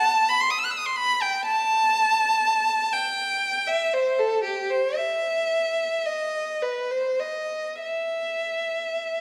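Rubato and free in a slow 6/8 of roughly 31-42 dotted-quarter beats per minute, this meditative, mournful classical excerpt in E minor features a single unaccompanied bowed violin, rich, smooth and even with vibrato and spanning G4 to F#6, placed up front yet bathed in a recital hall's lush 1.6-second reverb as if heard from further back in the room, lasting 9.2 seconds as part of a longer piece.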